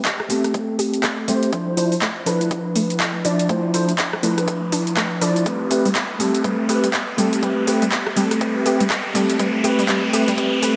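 A mellow, clean tine electric piano plays up-front stabs with chorus, sidechain pumping and a filter sweep in this deep, warm deep house build-up, joined by a detuned, bright analog pluck arpeggio under its own filter sweep, an overdriven drum kit of handclaps, metallic hi-hat, rim click and shaker, a punchy, dry electronic kick set back in the mix, and an electronic riser entering at 1.0 s, as the chords move from Am7 through Dm9 to Am9/G inside a moderate echo chamber.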